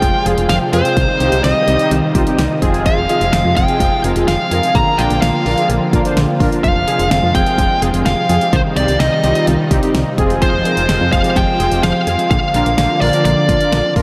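Synth-pop at 127 BPM in a melancholic, cool mood, this excerpt sets an up-front, fuzzy picked lead guitar with distortion and analog delay over detuned sawtooth synth brass, an evolving wave-folded brassy pad, a very quiet lush unison pluck tracing arpeggios, a round, dark FM bass and a punchy layered electronic pop drum kit, all moving through Fm, Cm and Bb chords in a dreamy mix soaked in a huge 8.6-second ambient reverb.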